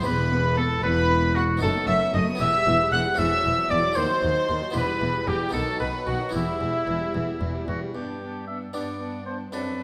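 Dark, gut-string violins carry the melody over a second violin line and a bright, plucked harpsichord as this driving, dramatic baroque-style concerto movement in E minor opens at 76 BPM in a straight 6/8, soon joined by an up-front oboe with vibrato sharing the melody, a distant viola section, a warm cello section and a rich double bass section that drops out at 7.8 s, the strings bowed in period style and the whole ensemble set in a moderate recital hall reverb.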